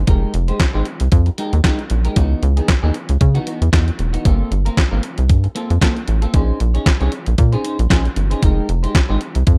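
A swung sixteenth-note groove at 115 BPM in 4/4 drives this late-night, danceable slice of early-eighties boogie funk, cut from a longer piece and tuned to A4 = 437 Hz. A clean 12-bit drum machine with a sampler-style character sits up front, its thumpy kick, fat snare, hi-hat and handclaps dressed in gated reverb. Beside it, a rubbery square-wave bass with a sine-like roundness bounces along, its fast-attack filter pluck decaying into a hollow, mellow tone. Further back in the mix, a picked electric guitar, compressed and slightly broken-up, plays a riff bathed in lush chorus. The harmony cycles through minor eleventh chords, moving from Fm11 to Dbm11, Gm11 and Bbm11 before returning to Fm11 at 8.4 seconds, all within a digital ambience.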